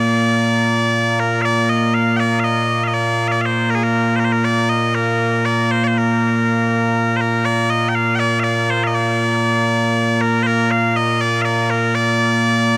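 Solo bagpipes ring out from the first moment, bright and piercing, in a continuous, up-front line of proud, ceremonial Scottish pipe music in 6/8 at 80 BPM in dotted quarters, in Bb major with tuning at A4 = 437 Hz. A huge ambient reverb with a long 7.4-second tail surrounds the pipes, giving them a grand, hall-filling presence. This short cut from a longer piece plays its opening phrase and then repeats it from 7.4 seconds until the close at 12.8 seconds.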